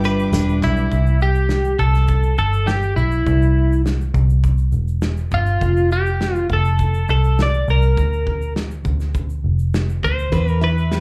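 A straight 4/4 pulse at 102 BPM drives this carefree, heartfelt acoustic pop excerpt in C major, where a dark, round muted electric bass sits up front beside a loose indie drum kit of punchy kick, shaker and snare; a twangy, compressed twelve-string electric guitar carries the melody from 0.1 s; a jingly tambourine and lush, bowed string chords drop away within the first second; and a bright, jumbo steel-string acoustic guitar returns at 10.3 s with fingerpicked nylon-string arpeggios squeaking softly in the background, the whole performance heard live through a club PA.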